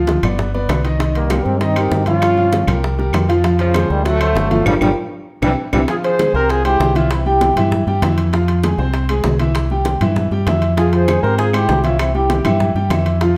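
Fiery and driving, this salsa excerpt moves at 196 BPM, settling into F harmonic minor from 5.9 s. A bright, punchy trombone section carries the melody with vibrato up front, over a clear, intimate concert grand piano with audible action noise and a round, dark fingered electric bass. Congas, tight high-tuned bongos and woody claves sit in the background alongside ringing metal-shell timbales, with a band accent and drum fill leading into the new section at 5.9 s, all in a dark production with a large studio reverb.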